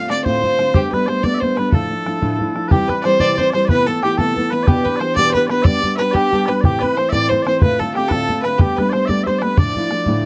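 Celtic folk jig in 6/8, driving, dark and lively, in which an intense, boxy fiddle carries the melody up front while mellow, sweet small bagpipes hold a second line and a dark fingerpicked steel-string acoustic guitar and a damped, tight bodhran drive the accompaniment, with a twangy, very quiet bluegrass banjo joining at 2.7 seconds, all captured in a dry, close 1970s-style studio sound with light reverb.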